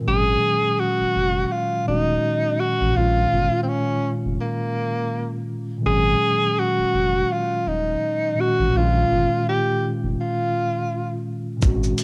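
Lo-fi hip hop with a hazy, melancholic swing, in which a mellow tine electric piano, dulled by cassette tape and a low-pass filter, moves between Absus2 and Bbm7 chords while a soft, round dub sub bass with tube saturation sits deep underneath. A breathy, close-miked tenor saxophone carries the jazz-style solo melody up front, with subtone and vibrato, through the same muffled tape haze. Only at 11.6 seconds does a gritty, compressed sampler-style drum kit arrive, with a thumpy kick, hi-hat and shaker, before this cut from a longer piece ends at 12.0 seconds in a lightly reverberant home-cassette sound.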